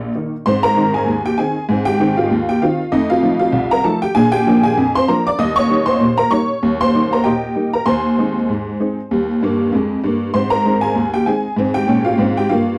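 A detuned, jangly honky-tonk upright piano plays alone from the start, carrying a lively, cheerful ragtime tune in a swung 2/4 that runs through a chain of seventh chords before settling home. The piano's woody, up-front tone spans from deep bass notes to a bright upper register. It is captured in a dry, close 1970s-style studio sound with light reverb, in a short excerpt cut from a longer piece that ends at 12.8 seconds.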